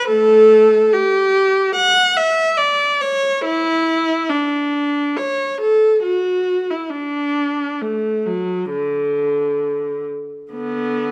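Close, detailed microphones place the viola up front, framed by a moderate recital hall reverb that decays over about 1.4 seconds. This short cut from a longer classical piece is a baroque-style suite movement for unaccompanied viola in D major, tuned to A4 = 435 Hz. A single bowed viola plays alone from 0.0 to 11.1 seconds, ranging from D3 to F#5. Its tone is warm and expressive, shaped by vibrato and portamento. The pulse sits around 65-73 BPM in 4/4, loosened by rubato, giving the movement a flowing, dance-like character.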